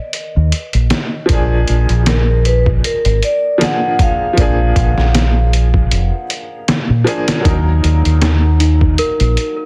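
A swung, sampler-style trip hop beat of thumpy kick, medium-tuned snare and hi-hat opens this dark, cinematic fragment, its overdriven, muffled, pitched-down drums sitting up front beside a round, punchy fingered electric bass. From 1.3 seconds a woody upright piano adds accompaniment colored by tremolo, tape echo and 12-bit sampler grit, and from 2.1 seconds a metallic, ringing vibraphone carries a dry, close-miked melody through its own tape echo. A delicate, bell-like celesta joins with arpeggios through digital delay at 7.5 seconds, the mix set in a small room with a heavily compressed radio sound.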